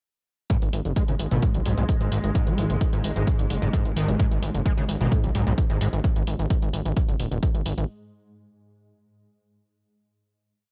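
Recorded at home on cassette with a digital ambience, this hypnotic, driving peak-time techno piece in G# minor at 130 BPM rides a single G#m groove, where a punchy, layered four-on-the-floor kick and analog-toned programmed hi-hats begin at 0.5 seconds beneath a rolling, saturated sawtooth synth bass, a squelchy, distorted acid line with accents and slides that stops at 5.9 seconds, and a swarming, detuned drone that enters at 1.3 seconds and warbles in the background with its own reverb.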